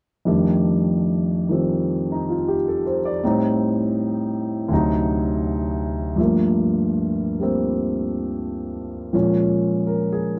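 Solo jazz with a relaxed, sophisticated mood, this short passage is cut from a longer piece and moves at an easy swing. A dark grand piano carries everything alone from 0.3 seconds, sitting up front with a mellow, vintage tone and long sustain that lets its smooth voicings ring out across a span from low D2 to D5. The harmony drifts through rich extended colours, opening on F13 and passing through Am7b5 and D7b9 before settling into Gm9 and closing on Bbm7 near 9.1 seconds. A moderate small-room reverb gives the instrument a close, intimate setting, and the production as a whole leans dark and warm. The fragment ends at 10.4 seconds, leaving the phrase suspended mid-thought.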